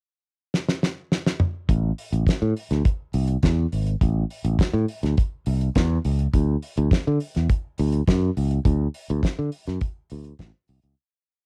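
A damped 70s drum kit opens this short, driving disco piece with a fill at 0.5 seconds, then settles into a four-on-the-floor beat of tight kick, fat snare and open hi-hats on the off-beats, sounding dry and up front with a cassette tape colour. At 1.7 seconds, after the pickup bar, a modern fingered electric bass enters for the verse, bright and punchy through tube saturation, playing a syncopated line from G#1 to D3 with muted ghost notes and chromatic approach notes. The groove sits at 104 BPM in a straight 4/4 and in A dorian, tuned to A4 = 438 Hz, giving it a glamorous mood. The sound is that of a home recording on cassette, with little reverb and both parts placed close and direct. A fade-out begins at 8.7 seconds and carries the verse to the end of this complete piece.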